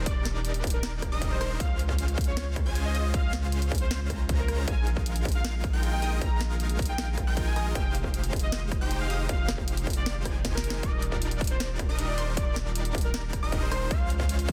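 A deep, thick saturated sub bass and a distorted, layered electronic kick stand out most in this bright, lush future bass excerpt, both pumping at 156 BPM in a half-time 4/4 feel, in Eb major and tuned to A4 = 442 Hz, with the bass under sidechain. Huge, detuned supersaw chords carry the riff with a noisy, airy shimmer, while a velvety lead with chorus, vibrato and digital delay sings the melody from 0.1 to 14.1 seconds. High in the background, a punchy unison pluck spins arpeggios roughened by vintage 12-bit sampler grit and echoed by digital delay, and a very quiet, breathy pad holds soft sustained chords with a slow attack and long release. A trap kit adds bright hats, rim clicks and a sharp, soft-clipped snare with a tape-warm edge, punctuated by a drum fill at 10.4 seconds. The harmony moves through Ebmaj7, Dbmaj7, Bb7sus4 and Fm9 before returning to Ebmaj7, all in a dry, dense and heavily limited modern mix.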